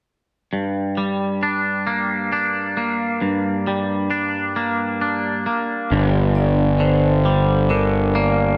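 A twangy, compressed electric guitar opens at 0.5 s with clean arpeggios on a G minor chord, colored by chorus, tape echo and slapback, setting a cathartic, melancholic rock mood in a slow 6/8 at 45 BPM, before a round, fuzz-drenched picked bass arrives up front at 5.9 s and a metallic, ringing vibraphone with tape echo adds high arpeggios from 6.4 s, all within a lush hall reverb and a big arena sound.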